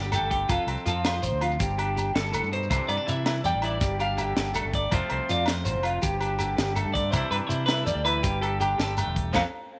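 Sunny and danceable, this short highlife guitar band clip, cut from a longer piece, rolls along at 108 BPM in a straight 12/8, cycling through F, Gsus2 and Cadd9 under a clean, hollow-bodied semi-hollow electric guitar melody sitting between G4 and G5. Beneath it, a twangy clean electric guitar comps, a slightly broken-up, lo-fi guitar through a small old amp plays chorused arpeggios, and a round fingered bass anchors the low end, while a tight funk kit with a high-tuned snare and punchy kick and the ringing agogo bells enter together just after the start, with a grainy shekere tucked in the background. Light studio reverb wraps the band, and at 9.4 seconds a drum fill and a band accent close out the clip.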